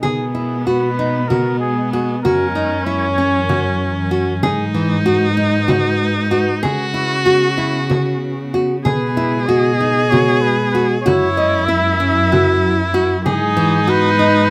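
Set in a straight 7/8 at 191 BPM counted in eighths, this restless, hypnotic chamber piece turns over a cycling B6, F#7, G#m7 and C#7sus4 progression. A fingerpicked nylon-string guitar carries the arpeggios with a deep classical tone, while a dark cello, bowed sul tasto with an airy, intimate sound, holds the bass. A small, bright frame drum keeps the percussion close and acoustic throughout. The flugelhorn sings the melody in a jazz style with scooped notes and vibrato, playing from the start, resting after 4.1 seconds, and returning at 8.9 seconds. Up front, a boxy viola played by a single player traces an even second line beneath it, and a glassy FM pad sits in the background with ethereal sustained chords colored by ensemble chorus, phaser and its own reverb. The recording is close and detailed with a touch of light reverb, cut from a longer piece.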